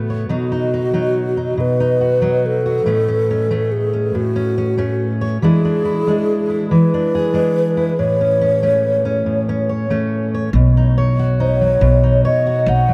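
Drenched in a huge, wet reverb that fills a vast, echoing space, this peaceful acoustic folk passage in B mixolydian drifts along at a slow 47 BPM in 6/8. A dark, full-bodied fingerpicked steel-string guitar, up front, carries the chords from B through A and E7, while an airy, hollow alto flute with vibrato sings the melody from 0.3 seconds. At 10.5 seconds the flute takes a solo over a Badd9 chord as a woody pizzicato upright bass enters up front, lending the short cut a warm close.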